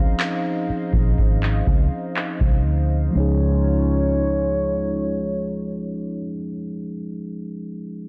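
A slow, straight 4/4 pulse at 61 BPM opens this smooth, romantic contemporary R&B excerpt in Db major, with a booming analog drum machine of deep kick and handclaps sounding up front from 0.2 to 2.6 seconds over a dark, round, foam-muted fingered electric bass. A mellow tine electric piano plays clean accompaniment until 8.1 seconds, while a hollow, flute-like pad holds slow-attack chords with chorus, and a gliding sine lead carries the melody with vibrato, portamento, chorus and delay. The harmony shifts from Dbmaj9 to Dbadd9, and a filter sweep shapes the digital ambience during the opening.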